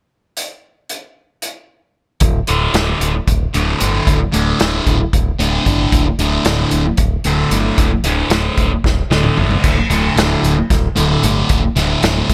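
Kaleidoscopic and hypnotic, this psychedelic rock excerpt in 7/8 opens with a punchy, up-front vintage drum kit with dark cymbals and a pumping small-room sound, joined at 2.2 seconds by a bright, direct fingered electric bass and moments later by a thick, double-tracked fuzz guitar riff colored by distortion and phaser, before a drum fill at 8.8 seconds, all in a dry sound.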